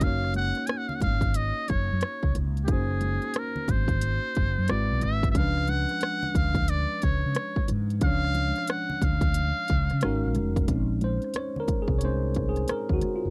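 A 90 BPM groove in 4/4 with sixteenth notes swung at 64% opens this sultry, soulful neo-soul R&B excerpt, cut from a longer piece. An electronic, produced drum kit lays down a heavy kick, crisp hi-hats and rim clicks with a tape-warm character, while very quiet congas with thick, hard-handed skins sit close and dry beneath it. A dark, round fretless electric bass with a lush chorus anchors the low end, and a worn, slightly out-of-tune tine electric piano, also chorused, comps through chords like Gb6, Ab7alt and Db7b9. Up front, a buzzy, thin trumpet with a metal mute carries the melody in a jazz style with vibrato and a smooth top, until it drops out at 10.4 seconds. From 10.7 seconds the electric piano takes a short solo over Bbm11 to the end at 13.3 seconds, all in a dry, close 1970s-style studio sound with little reverb.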